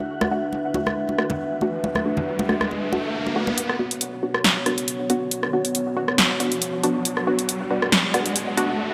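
Deep dubstep with a cavernous, heavy mood, this short cut from a longer piece moves in a swung, half-time feel. A dark analog pad holds sustained chords with a slow attack and chorus. Beneath it sit muted, detuned sawtooth chord stabs with a filter pluck and fast attack, treated with chorus and dub echo. Ringing congas with dub echo and a breathy, wind-like noise texture in the background open the track, and both fall away at 3.6 seconds as the harmony shifts from D to B minor. From there a build-up takes hold: a filter sweep works over the stabs while an electronic riser, present since 1.2 seconds, carries on. Up front, a punchy deep house drum kit of hi-hat, rim click and snare drives the groove, and a lush hall reverb fills the mix.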